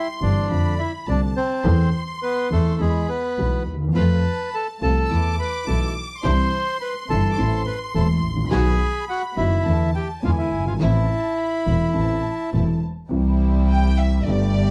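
A dark, lightly reverberant production frames this passionate, melancholic tango excerpt in A minor at 105 BPM with a rubato feel: a reedy, close-miked bandoneon with slapback echo carries the melody until 12.5 seconds over a clear, bowed double bass up front and a concert grand piano with deep bass and short sustain, a smooth violin section holds a second line, an intimate sul tasto string section adds soft-attack stabs in the background from 4.0 seconds, and the violins step forward for a solo from 13.1 seconds.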